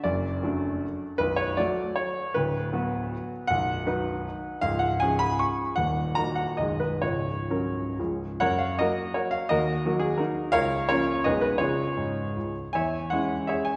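Graceful and proud, this classical romantic dance in 3/4 unfolds on a solo baby grand piano, with dotted rhythms and a flexible rubato pulse ranging from 119 to 180 BPM. The piano spans B0 to C#6, and its tone is clear and natural with a short sustain. It sits in a wet scoring-stage reverb with a 2.0-second tail, heard from further back in the room. The harmony opens on D/F# and Bm7 before settling into F# major from 3.5 s, moving through chords such as D#m, G#m/B and C#. A second section begins at 8.4 s on F# and closes this fragment of a longer piece on C#m/E, with the instrument tuned to A4 = 435 Hz.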